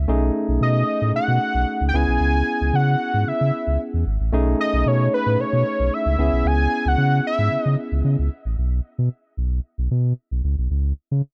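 Danceable and late-night, this excerpt of early-eighties boogie funk moves at 113 BPM in C# minor, with a deep, sine-and-triangle sub bass doubled at the octave sitting up front. A barky, lightly overdriven tine electric piano heard through a combo amp alternates B13 and C#m7 chords, and a fat, detuned sawtooth analog lead with sub octave, ring modulation, filter sweep and chorus carries the melody until 7.8 seconds, all set in digital ambience. After the piano stops at 8.3 seconds, the bass continues alone until 11.2 seconds, landing on a C#5 chord.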